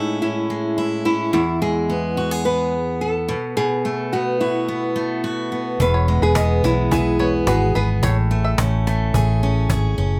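Acoustic pop at 108 BPM in E major with a carefree, heartfelt mood, this excerpt opens with a small-sounding fingerpicked nylon-string guitar melody over a bright, up-front picked steel-string acoustic guitar moving through Amaj7, E and B7sus4 chords, before a round, dark, foam-muted vintage electric bass and a snappy, close and dry cajon enter at 5.8 s, joined at 5.9 s by a twangy bluegrass banjo playing arpeggios with fingerpicks, all within light reverb.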